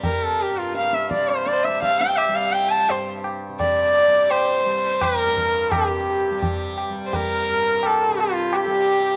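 Hindustani classical music in raga Bageshri on G, solemn and introspective, moving at 85 BPM in 5/4 with tuning at A4 = 441 Hz, cut from a longer piece. A single nasal, earthy sarangi carries the melody up front with light vibrato, portamento, an airy bow and sympathetic strings, over a buzzing, shimmering tanpura drone; low-tuned tabla with a short ring plays until 8.8 seconds, and a reedy, breathing hand-pumped harmonium adds a very quiet second line from 0.2 seconds. The sound is dry, recorded outdoors, and the music moves into a new section at 5.7 seconds.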